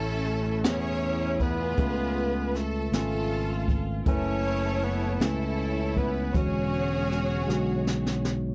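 Slow gospel in 6/8 at 53 BPM in A major, hopeful and jubilant, where a lush, bowed symphonic string section with vibrato carries the melody alongside a mellow alto saxophone with scooped notes and a soft attack, over a worn, slightly out-of-tune tine electric piano tucked in the background, an up-front fingered electric bass with a bright, direct tone, and a roomy jazz brush kit with a high-tuned snare and boomy kick that enters at 0.3 s and plays a fill from 7.5 s, the harmony moving through Amaj7, C#7b13, F#m11 and E13 in a dry fragment cut from a longer piece.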